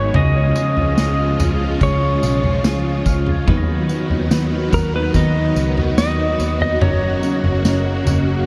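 Dream pop at 72 BPM in 4/4, this dreamy, ethereal excerpt drifts over C#, B/D# and F# chords, with a twangy lap steel carrying the melody with slide and volume swells through tape echo. A picked, tremolo-washed electric guitar and a fingered, dark electric guitar playing arpeggios sit in the background beside bright sawtooth string-machine violas with slow attack and long release, while a round, foam-muted bass and a smooth vintage kit of tight kick, snare, tambourine and toms anchor the pulse. A soft, bell-like glockenspiel struck with rubber mallets rings through tape echo until 4.3 seconds, and the whole mix is soaked in a huge ambient reverb.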